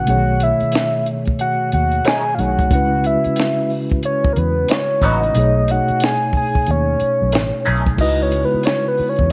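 A swung sixteenth-note groove at 91 BPM in 4/4 rides on a compact cocktail drum kit, dry and up front with a punchy kick, high-tuned snare, dark cymbals and finger snaps, beneath a round, foam-muted vintage electric bass. This smooth, sultry neo-soul R&B excerpt in C# minor moves between B13 and C#m11 chords as a mellow tine electric piano, clean through its built-in speakers, supports a full, octave-layered synth lead with sub-octave body, chorus and vibrato, which steps forward for a solo from 8.0 seconds. From 2.1 to 7.8 seconds a twangy electric guitar through a small old amp adds a lo-fi, slightly broken-up second line colored by wah and spring reverb, and the recording sits in light studio ambience.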